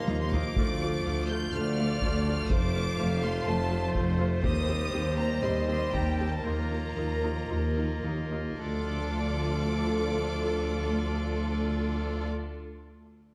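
Dark and epic, this cinematic orchestral film-score excerpt moves in straight 4/4 at 105-124 BPM in D phrygian, opening on a close, dry taiko fill with heavy sticks that drives the ensemble until 6.4 s, while the tempo slows from 3.5 to 8.6 s. A rich, focused violin section carries the high melody over a second violin line full of portamento, with soft-attack violas, smooth cellos and a mellow French horn section in the background, while lush double basses and a tuba with a smooth top reinforce the low end. A hollow pipe organ clarinet stop with baroque voicing and a hint of chiff adds sustained chords, all set in a dark production with a moderate scoring-stage reverb of 1.9 s.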